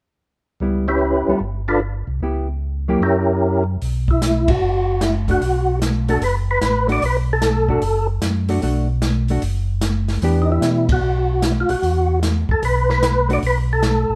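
Recorded live in one room with light reverb, this short cut from a bluesy, smoky soul jazz organ trio swings at 150 BPM in B minor. A round, mellow tonewheel organ carries the bass through a slow rotary speaker, while a second organ voice, percussive with audible key click and a fast rotary, takes the melody over a clean hollow-body jazz guitar's accompaniment, moving from C#m7b5 and F#7b9 into a long Bm7 stretch. Soon an acoustic drum kit with dark cymbals and a boomy kick joins in, and the band hits accents at 4.4 and 10.8 seconds.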